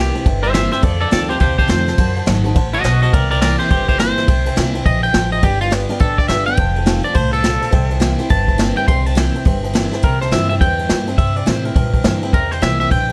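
Rockabilly at a rowdy, upbeat 209 BPM with a 62% swing on the eighths in C mixolydian, this cut from a longer piece opens with a clean, twangy electric guitar solo that sits up front with analog delay through 10.0 s, over changes through C7, F7 and G7 chords. Underneath, a bright, full-bodied steel-string acoustic guitar is picked, a woody, boxy upright piano with audible action noise and long sustain adds intimate accompaniment, and a thumpy, dark pizzicato upright bass on gut strings anchors the low end. A jazz kit played with brushes enters at 0.2 s, its punchy kick, medium-tuned snare and dark cymbals sounding natural and up front in a small room, all bathed in light reverb.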